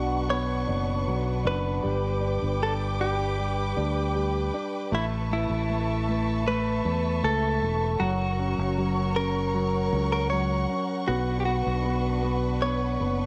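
Heartbroken and longing, this slow 78 BPM pop fragment in B minor sets a clean, compressed electric guitar melody recorded direct over a present grand piano with long sustain, a lush, distant bowed string section full of vibrato and portamento, and a growly, punchy fingered bass sitting up front, moving from Bmadd9 through G, Aadd9 and F# back to Bmadd9 in light reverb.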